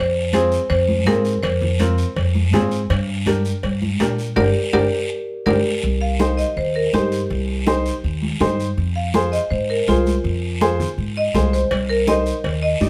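The recording sits in a moderate studio reverb and is heard from further back in the room, with a clear, slightly detuned upright piano and a woody pizzicato upright bass placed up front. This passionate, danceable cumbia in C minor moves at 164 BPM in a straight 4/4, is cut from a longer piece, and passes through Fm, Gm, Cm and Fm before settling on Cm. The marimba, struck with medium hard mallets, carries the melody with a percussive, boxy tone, pauses briefly, then returns at 4.4 seconds as the band hits an accent and a drum fill leads into a marimba solo from 5.8 seconds to the end. The worn piano accompanies with short sustain, while the steel-stringed bass holds the low end throughout. Ringing congas sit close and dry in the background, a raspy guiro runs the whole way through, and vintage, band-limited cowbell and timbales with a metal shell play through the opening, drop away, and come back near the close at 11.7 seconds.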